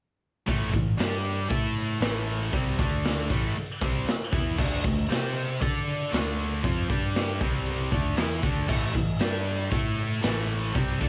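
A straight 4/4 hard rock groove drives this short, aggressive clip from a longer piece, with every part playing together from 0.5 to 11.1 seconds and the mood staying menacing throughout. Up front, a raw garage drum kit pounds out kick, snare, hi-hat and crash in a small, pumping room, its saturated, gritty sound marked by dark cymbals, a medium-tuned snare, a punchy kick and a rolled-off top end. A bright, overdriven electric guitar carries the main riff up front, while a scooped, high-gain distorted guitar plays a riff further back, both picked and both coloured by cassette tape. A picked electric bass, amped and growly, adds a punchy low foundation. Power chords and minor chords move through the progression, and the whole take sits in light reverb with the rough, homespun character of a home recording on cassette.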